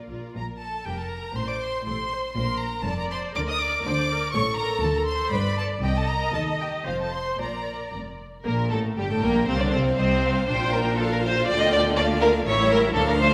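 Cheerful and lively, this quick classical-period movement for string orchestra moves in a flexible, rubato 2/4, heard as a section cut from a longer piece. A close, expressive first violin section carries the melody high above a lush second violin line with soft attacks and portamento, while violas supply focused, smooth-topped accompaniment. Cellos enter at 0.4 seconds with an even tone, joining distant, soft-edged double basses on the bass line, all set in the wet bloom of a concert hall.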